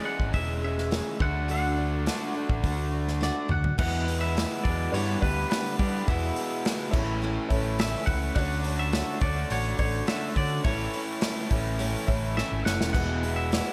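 Up-front, punchy country drums with fills at 3.2 and 12.4 seconds drive this nostalgic, hopeful folk and heartland rock excerpt at 105 BPM, alongside a round, dark picked electric bass, a shimmering twelve-string acoustic guitar with finger squeak in the background, a double-tracked overdriven garage guitar riff, and a clean, twangy electric guitar melody, all three guitars touched with slapback echo, while a very quiet, woody upright piano enters at 3.8 seconds as chords move from C#m/E through E, A and Dmaj7 within a big arena sound.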